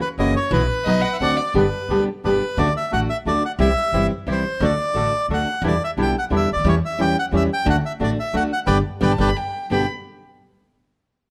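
Tango in G major at 177 BPM in a rubato 3/4, elegant and playful, with an up-front, reedy, airy bandoneon carrying the melody over a fingerpicked classical nylon-string guitar that sounds full-bodied with audible finger squeak, bright bandoneon stabs set in the background, and a woody, thumpy pizzicato upright bass on gut strings, while a dark, bowed solo violin with vibrato and portamento adds a brief second line at 0.8 s and returns at 9.0 s, during a band accent that begins at 8.7 s, in a recording made with close, detailed microphones, light reverb and some lossy compression artefacts.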